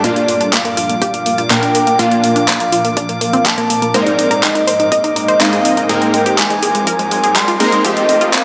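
A driving, bittersweet progressive house build-up at 123 BPM opens with a velvety, wave-folded sawtooth lead carrying the melody over a filter sweep, joined by bright detuned unison plucks in arpeggios that are also swept, punchy supersaw stabs, a dark, shimmering granular pad in the background, a glassy texture of drifting overtones, an up-front pop kit of handclaps and hi-hat, and a very quiet punchy electronic kick, the synths all pumping through Bb, Abadd9 and Fsus2 in a lush hall reverb until an electronic riser enters at 5.7 seconds.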